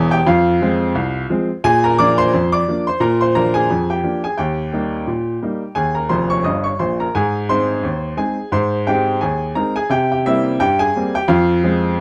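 A clear, woody upright piano sits up front and plays alone in this jaunty, playful ragtime passage in Ab major, moving at 87 BPM in 2/4 with a light swing on the sixteenths and running from deep bass notes to the upper register. It passes through Fm, Bb7, Eb, Ab and C7 before returning to Fm, with a brief fill from 6.1 to 7.1 seconds. The natural piano tone is set in a moderate studio reverb within a dark production, and the section is cut from a longer piece.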